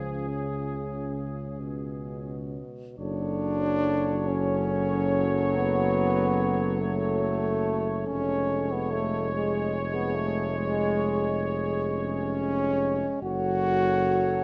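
A close-miked, warm euphonium sits up front in this elegiac, solemn fragment of a classical, hymn-like piece for brass band, carrying the accompaniment with light vibrato alongside a mellow tuba that anchors the bass from E#1 to C#2. In F# minor and 12/8, the music moves slowly at 43-49 BPM counted in dotted quarters, with a rubato feel. A tight trumpet section with a smooth top sings the melody between G#4 and C#5, while a soft-attack French horn section, distant and roomy in the background, shapes a second line beneath it. A trombone with a vintage colour adds accompaniment further back, and all five parts play together from 0.0 to 14.4 seconds in a restrained classical style. The harmony rests on C# before settling to F# minor at 3.0 seconds, where the opening phrase begins again, then passes through C#/E# and returns to F# minor near the close. Moderate concert hall reverb lends a spacious sheen, balanced by detailed microphones.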